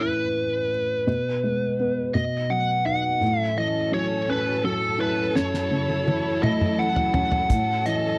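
Tender and romantic, this short cut from a longer six-eight pop ballad moves at a slow 56 BPM, with a bright, overdriven lead guitar carrying the melody through slapback echo over a mellow felt-muted upright piano whose action noise is audible and which plays a fill from 2.1 to 3.2 seconds, veiled con sordino strings holding sustained chords from 3.2 seconds, and a damped 70s drum kit with a fat snare entering at 5.4 seconds with a fill, all captured as a dry, close 1970s-style studio recording over chords such as Aadd9, G#m/B and F#m7.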